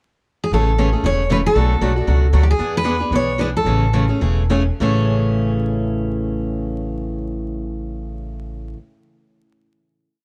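A jumbo steel-string guitar, bright and full-bodied, carries a playful, motif-based melody of period phrases from 0.4 to 4.5 seconds in this short, lively piece of acoustic string swing in the jazz manouche style. It is in A major, with a swung 4/4 feel at 195-232 BPM. Beneath it, a boxy parlour guitar with fresh strings and audible finger squeak keeps a four-to-the-bar rhythm, short and accented on two and four. A woody, thumpy upright bass with gut strings is plucked up front in a two-beat root-and-fifth pattern with walk-ups. After a brief pickup, the band moves through Amaj7, Bm7 and E7 before returning to Amaj7, slows down from 2.6 seconds, and lets a final chord ring out from 4.8 seconds. Light reverb, vinyl crackle and a dark, warm production give the recording a vintage character.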